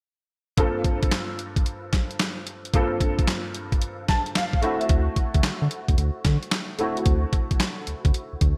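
R&B in a new jack swing style, this confident, bouncy cut moves at 111 BPM in 4/4 with a swung sixteenth feel in G dorian, shifting from Gm11 to D7. A clear concert grand piano with a chorus sheen plays accompaniment and takes a fill at 3.8 seconds, over a gritty, compressed, pitched-down sampler-style drum kit of thumpy kick, snare, hi-hat and handclaps steeped in gated reverb. A round, dark analog bass enters at 4.9 seconds, within a bright 1980s-style digital production touched by light reverb.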